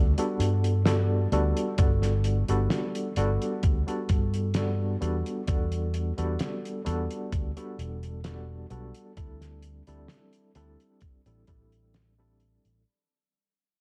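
This vaporwave excerpt drifts at a slow 65 BPM in straight 4/4 and G major, with a faded, woozy mood, cut from a longer piece and fading out across its whole length. A worn, slightly out-of-tune tine electric piano carries the accompaniment through Gmaj7, Em11 and D7sus4, its medium tremolo, subtle chorus, tape echo and gritty 12-bit sampler texture coming through a combo amp up front. A round, amped fingered electric bass sits low and up front beneath it, darkened by a low-pass filter with a filter sweep running throughout. A damped 70s drum kit enters at 0.2 seconds, its dry hi-hat and fat snare dark and rolled off at the top, with gated reverb and studio ambience. A thumpy, sampler-style electronic kick joins at 1.8 seconds and drops out at 11.7 seconds, sounding re-recorded in a small room. Light studio reverb and a cassette-tape character tint the whole recording.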